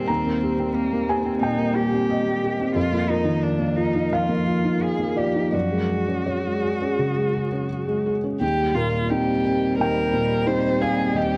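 Neoclassical piano and strings in Eb major, hopeful and tender, drifting in a rubato 4/4 at 80-91 BPM, where a soft, felt-muted upright piano with audible action noise sits up front as accompaniment, a focused cello with vibrato carries a second line, and a dark, warbling tape-like pad with chorus holds sustained chords in the background throughout, joined by a smooth, rich violin that takes the melody at 8.4 s, the whole recording worn with cassette-like pitch drift and vinyl crackle.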